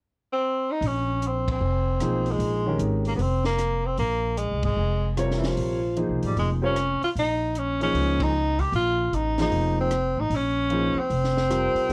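The tenor saxophone leads this cool, intense modal jazz excerpt, entering alone at 0.3 seconds with a clear, soft-attacked tone and light vibrato. It sits up front in the balance, though its sound is roomy and distant. Upright bass and a compact cocktail drum kit join at 0.8 seconds as the band settles onto a Bbm11 chord in Bb dorian, swinging in 4/4 at 152 BPM. The pizzicato bass is woody and dark on steel strings and placed up front. The dry kit, sitting lower in the mix, brings a punchy kick, a high-tuned snare, rim clicks, hi-hat and dark ride cymbal. A concert grand piano arrives at 2.0 seconds with natural-sounding accompaniment and deep bass, the group hits several shared accents, and light reverb plus the warbly pitch drift of worn old cassette tape colour the recording, which is tuned to A4 = 438 Hz and cut from a longer piece.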